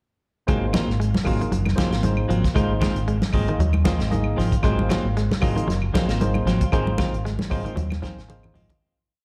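A dark, round fingered electric bass anchors this joyful, driving afrobeat groove with a syncopated riff up front beside a punchy, dry soul drum kit, while a barky, lightly overdriven tine electric piano plays quartal chord stabs, a hollow-body semi-hollow guitar picks a background ostinato, a clean electric guitar strums upper chord shapes with tape echo, and woody claves and thick-skinned congas sit further back in a live club sound that fades out from 6.7 seconds as the drums and electric piano fill from 7.8 seconds.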